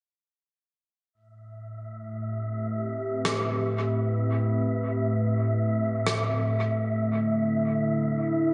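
A warbly, tape-like pad sits up front from 1.5 s, holding sustained chords with a slow attack and long release. Its detuned sawtooth and triangle tones carry chorus and a vintage 12-bit sampler grit that gives a nostalgic, lo-fi character. This hazy, spacious ambient dub excerpt unfolds in free time in A minor, tuned to A4 = 437 Hz, resting on Am7 before shifting to a D7 voicing. Just after the pad enters, a dark, breathy, wind-like noise layer drifts in on a single high E, airy and sustained beneath its own reverb. From 3.2 s to 6.2 s, a faint acoustic rim click sounds as if in a big room, trailed by dub echo. The whole is bathed in wet spring reverb with small-room ambience, and the top end is rolled off, leaving a mellow, muffled sheen across this excerpt cut from a longer piece.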